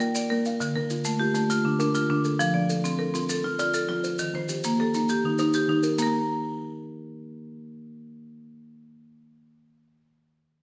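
A stone room's reverb wraps this live, one-room take of a short cut from a longer piece of southern African traditional music, built on a rippling mbira-style interlocking cycle in a straight 12/8. Up front, a bright, woody marimba on rosewood bars plays percussive arpeggios over Bb, Dm, F and Eb, while a softer buzzing kalimba threads its own hollow, mellow, fingertip-plucked arpeggios through the same span. Grainy, vintage-toned maracas add a band-limited shimmer until 6.1 seconds, after which the two keyed instruments carry a chordless closing stretch to 9.7 seconds.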